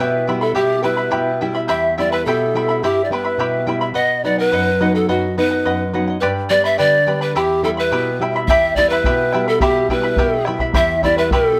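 A breathy wooden pan flute carries the melody up front in this festive, earthy Andean folk piece, its tongued, chiffy phrasing and expressive vibrato ringing in plate reverb over a steady 2/4 pulse at 106 BPM in E minor. A bright, shimmering fingerpicked charango with doubled strings and a dark, full-bodied nylon-string guitar fill out the accompaniment, moving through Em, B and G. At 8.5 seconds a deep, dry bombo joins, all within a moderate studio room carrying a faint mains hum in this section cut from a longer piece.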